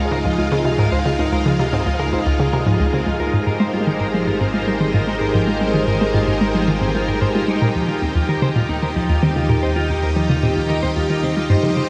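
Ambient, sequencer-driven space music in a straight 4/4, hypnotic and expansive, where a lush, vintage string machine holds sustained chords over a nasal, evolving analog drone bass, a clean, dark electric guitar picks arpeggios through tape echo, a hollow, bouncy square pluck drives the riff with chorus and tape echo, a faint, bubbling stepped-filter texture drops out at 3.3 s as a filter sweep begins on the synth arpeggio sound, and a wet shimmer reverb bathes the whole excerpt.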